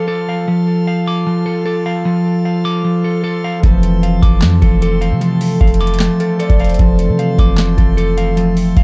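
Sustained pipe organ chords in a full, brilliant plenum voicing open this short, triumphant yet wistful trap cut in F major at 152 BPM, heard in half-time, joined from the start by up-front clean electric guitar arpeggios that sound twangy through a digital delay. At 3.6 seconds, as the harmony moves from F to Fmaj7, a ringing fingerpicked concert harp, a deep, boomy sine 808 bass and a booming analog drum machine enter together, the kit pairing a deep kick and crisp snare with handclaps and metallic hi-hats. The drums carry vintage 12-bit sampler grit and a tape-warm, up-front sound in a dark, dry production.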